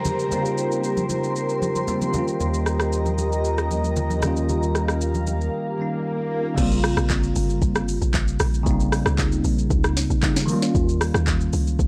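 Amapiano at 115 BPM in Bb dorian, soulful and hypnotic, cut from a longer piece and moving between Bbm69 and Eb7 chords. A bell-like tine electric piano with a phaser carries the accompaniment throughout, while a glassy, ethereal FM pad with ensemble chorus and its own reverb holds sustained chords until 6.6 s, joined by a background downlifter and swell. Up front, an electronic afro-pop kit drives with a deep kick, sharp snare, crisp hats, rim clicks, handclaps, shaker and crash, and bright, thin-skinned congas sit close and dry behind it until 5.4 s. A round, triangle-and-sine analog bass holds Eb2 from 2.4 s to 5.5 s before a short break and swell. At the 6.6 s drop, a deep, percussive log drum bass with a fast attack and a noise layer takes over the low end, ranging from G1 to Eb2. The sound is dry and gritty, with little reverb.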